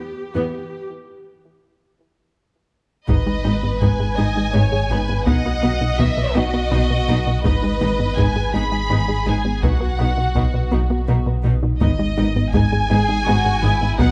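This is a brooding, relentless excerpt of hybrid orchestral and electronic film score, cut from a longer piece and moving in a steady 6/8. A lush viola section opens quietly in the background, and by 0.4 seconds a soft, round, dark pluck joins with arpeggios coloured by chorus and delay, over a very quiet, rich cello section holding the bass. At 3.1 seconds the music breaks into its full body: a focused, vibrato-laden violin section carries the melody while a second, smooth and even violin line sits beneath it. Heavy-stick taiko drums sit in the background, and a punchy, funky analog bass riff runs alongside a deep, full sub bass with octave and a very quiet double bass section. The whole ensemble sits in a moderate scoring-stage reverb that gives the bowed strings a spacious, cinematic sheen.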